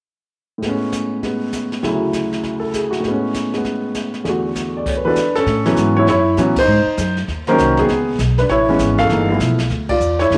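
A brisk swing at 198 BPM in 4/4 drives this short, sophisticated and playful jazz piano trio cut, set in A major. The upright piano carries the melody from 0.6 s, up front and intimate with audible action noise and a slapback echo, ranging from low D2 up to F5 over chords that move from Amaj9 and Dmaj9 to E9sus4. A brush drum kit plays throughout at a lower level, its airy, polished sound marked by dark cymbals, a medium-tuned snare and a boomy kick. At 5.5 s the second section begins and the pizzicato upright bass enters, thumpy and woody with gut strings, as the harmony shifts through A6, G#7 and C#m7 to G13. The full band hits accents at 6.5 s and 9.9 s. A moderate plate reverb and small room ambience wrap the trio in a cozy space.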